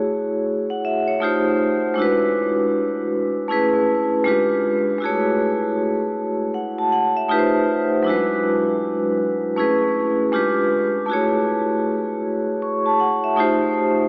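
A lazy swing on the sixteenths in 4/4 gives this nostalgic, reflective hip hop fragment its unhurried sway, carried entirely by a solo vibraphone struck with medium hard mallets. The vibraphone sits up front with a metallic, ringing, bright tone, a slow motor vibrato and a low-pass filter, cycling through a minor seventh chord, a ninth chord, a dominant seventh, a major seventh and a diminished seventh. The dreamy mix is soaked in cathedral reverb with a five-second tail and a small-speaker quality, and the passage is cut from a longer piece.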